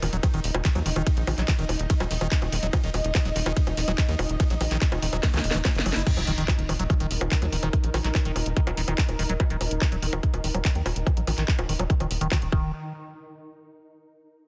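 This psychedelic trance excerpt opens straight into a drop at 144 BPM in Eb minor and 4/4, with a tight, punchy sawtooth sequencer bass driving the low end alongside an up-front electronic kick drum. A layered garage kit fills in cracking snare, warm hats, handclaps, bongos, ride and crash cymbals, while a squelchy, resonant acid bass riff sits in the background, colored by a phaser, tape echo and sidechain pumping. Above them, a swarming, nasal drone holds detuned, granular sustained chords on Eb5, bathed in its built-in reverb and also pumping from the sidechain. A drum fill leads into a very quiet electronic impact at 6.1 seconds, after which filter sweeps move through both the sequencer bass and the acid bass. The mood is psychedelic and hypnotic, and the dense, heavily limited mix stays dry.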